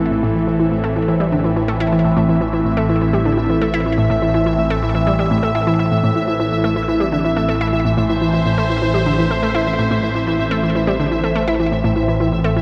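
A round, nasal analog pluck sits up front with a riff, its fast attack and short decay carried on chorus, delay and shimmer reverb across the whole 12.6 seconds of this fragment cut from a longer piece. Beside it, a swirling, detuned phased analog pad holds sustained chords from A2 to E5, bright and forward, with phaser, chorus and shimmer reverb making it shift slowly over time. Underneath, a warm sawtooth-and-pulse analog drone holds a low A1 with pulse-width modulation and chorus. High above, a quieter pulsing gated texture holds E5 in tempo-synced, detuned unison, with chorus, built-in reverb and shimmer reverb. This ambient, sequencer-driven space music moves at 124 BPM in a straight 4/4, resting on A minor throughout, and the whole thing sits in a wet scoring-stage reverb that gives it a hypnotic, cosmic mood.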